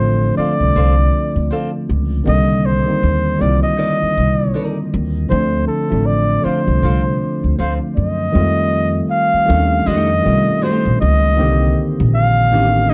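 A breathy flugelhorn carries the melody up front, its mellow jazz-style tone marked by a light vibrato, scooped notes and a plate reverb that gives the solo a soft halo. This is smooth, introspective R&B at 79 BPM in 4/4, with a gentle swing on the sixteenths, cut from a longer piece. Underneath, a worn tine electric piano heard through a combo amp supplies clean, slightly out-of-tune chords, while a pizzicato upright bass on steel strings sits close and sounds woody and thumpy. A small, fingerpicked nylon-string guitar slips in at 0.4 seconds with a quiet second line on fresh strings. The harmony moves from Dm7 through Cm9 and back to Dm7 before shifting at 8.3 seconds to F9 and then Cm7. A moderate small-room ambience and a dark, warm production wrap the whole ensemble.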